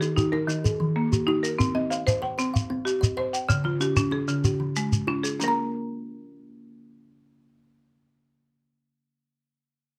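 A small room lends a moderate, short reverb to this hypnotic clip from a longer piece of southern African traditional music, built around an interlocking mbira-style cycle in 12/8 with a straight feel. Up front, a buzzing marimba struck with hard mallets plays arpeggios across its hardwood bars, its tone dry, percussive and band-limited with a vintage edge. A kalimba shares the same register, its short thumb-plucked arpeggios carrying a hollow-box resonance and a warm glow. A close, grainy shekere adds mellow acoustic percussion until 5.5 s, leaving the two keyed instruments to continue on their own. The harmony moves from Eb to Cm to Db before the chords fall away at 5.4 s, where a second section carries the cycle through to the end at 9.2 s.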